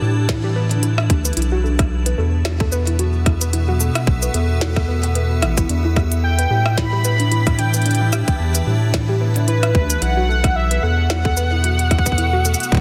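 IDM in E minor at 111 BPM with a lightly swung 16th feel, this melancholic, intricate excerpt pairs an icy, crystalline glass pad holding Em7 and B7sus4 chords with a warbling, lo-fi pluck tracing arpeggios, while a round, deep analog bass and a tight, overdriven electronic kick sit up front beneath a glitchy kit of tiny snare, clicky hats, rim click and cabasa, before a velvety synth lead with vibrato and a cassette-tape tinge enters at 6.2 seconds to carry the melody over a dense, heavily limited master.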